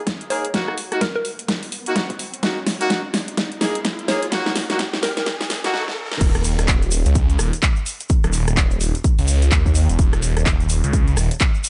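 Gritty and swaggering, this bass house piece is cut from a longer track and opens with a build-up that runs to 6.2 seconds, with a swung sixteenth-note feel. A punchy, tape-warm electronic kick and a big-room dance kit sit up front throughout, the kit bringing a huge snare, metallic hi-hats, handclaps, rim clicks and crash cymbal, with a drum fill running through the build. Over this, a bright, punchy horn section plays stabs with vibrato and a smooth top, sidechain-pumping and colored by a low-pass filter and tape echo, while a hollow, bouncy square pluck adds short, warbling melodic phrases with chorus and tape echo. An electronic riser climbs in the background from 1.0 seconds until the drop at 6.2 seconds, where the chords fall away and a thick, swirling detuned saw bass takes over up front, phased and pumping. A grainy, close tube shaker enters with the bass at the drop, and the whole mix sits in light digital ambience with its highs trimmed.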